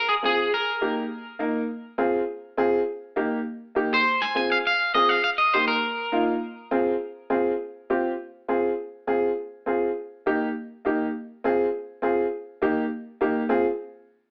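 A straight 4/4 pulse at 203 BPM drives this short, danceable Latin passage in F minor, cut from a longer piece. An electric guitar at the edge of break-up carries the melody up front with a bright, twangy, picked tone that is slightly broken up and bathed in spring and plate reverb, appearing in two brief bursts at the very start and again from 3.9 to 6.2 seconds. Beneath it, a clear upright piano holds down the accompaniment from 0.2 seconds to the end, its woody, worn and slightly detuned sound also placed up front. The harmony rocks between F minor and E-flat throughout, moving into a second section at 8.8 seconds where the piano carries on alone. The whole recording has an AM-radio character set in a moderate studio reverb, giving the energetic groove a broadcast-like feel.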